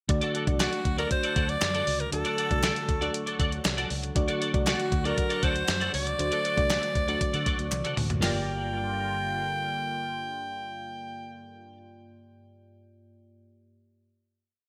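A straight 4/4 groove at 118 BPM drives this moody, urgent 1980s-style pop piece in G minor. A clean 12-bit drum machine sets a big backbeat with a thumpy kick, a fat snare and gated reverb alongside a round, foam-muted fingered bass playing a syncopated pop-funk line with chromatic approach notes, soon joined by very quiet group handclaps. A raspy, close-miked alto saxophone with delay carries the motif-based melody from 0.6 s over a warbling FM electric piano pushing dark drop-2 chords, a twangy twelve-string guitar riff with ensemble chorus, and a swirling phased analog pad in the background; after a drum fill ending at 8.2 s, the piece lands on a final Gm7 chord, with the electric piano ringing until 14.7 s in a bright digital production with plate reverb.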